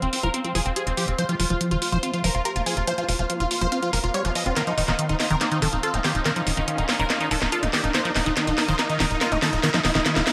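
Drums with a cracking snare and warm hats, a tight, nasal sequencer bass, a squelchy acid bass riff, detuned supersaw stabs and a cloudy granular pad all start together at 0.0 s in this intense, psychedelic trance build-up at 142 BPM, cut from a longer piece. The acid bass carries a resonant filter sweep across the whole passage, and both it and the punchy stab melody are coloured by phaser and digital delay. An electronic riser sits in the background from 0.2 s, a drum fill begins at 4.6 s as the harmony moves from F5 to Eb5, and a lush hall reverb surrounds the mix.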